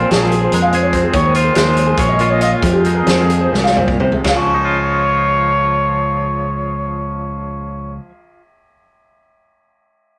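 A rough rehearsal-room recording with a small room's reverb and warm saturation carries this wistful, intricate fragment of math rock and midwest emo in 7/8, which slows between 1.1 and 4.2 seconds. A distant, roomy trumpet with vibrato sings the melody over a dark, fingered clean electric guitar's arpeggios, a bright, twangy picked guitar with tremolo, and a growling overdriven bass up front, moving from Bbm9 through Eb9sus4 and Fm7 to Dbadd9. A loose indie drum kit with a fat snare and punchy kick plays a fill from 3.5 seconds and stops at 4.4 seconds, leaving the other parts to carry the closing section.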